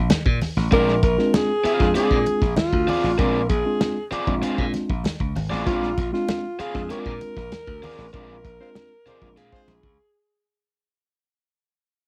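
A breathy, close-miked alto saxophone leads this gritty, playful funk excerpt, its whispered, jazz-style line scooping between notes with a soft attack and gentle vibrato as it sits up front from 0.7 seconds. Beneath it, a bright, punchy slap bass opens the cut at 0.0 seconds with transformer saturation, joined by a dark, smooth soul drum kit of hi-hat, tight kick and medium-tuned snare, its rolled-off top colored by cassette tape. Low-tuned congas add hard-handed, dry percussion, while a scooped, compressed overdriven electric guitar picks out accompaniment and a clean tine electric piano throws in stabs through a combo amp with medium tremolo. At 8.6 seconds a pop-style horn section slips in, sitting in the background with light vibrato, as the band accents together toward the close. Set at 97 BPM in a straight 4/4 in B-flat mixolydian on a Bb9 chord, the whole groove carries the light reverb and character of a home cassette recording.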